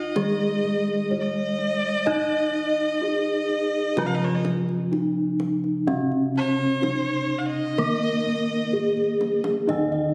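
A straight 4/4 pulse at 63 BPM carries this ceremonial, shimmering Javanese gamelan passage in Eb slendro, cut from a longer piece. A mellow bronze metallophone played with padded mallets and touched by tape echo carries the melody, while a clear, smooth erhu with vibrato and portamento sings a second line up front until 9.5 seconds. Beneath them, a bright, dry, close-miked metallophone accompanies, dark bossed gongs beat in the background, a tight kendang adds a fill at 8.7 seconds, and a final metallophone arpeggio arrives at 9.7 seconds, all set in a moderate stage reverb heard through a phone recording.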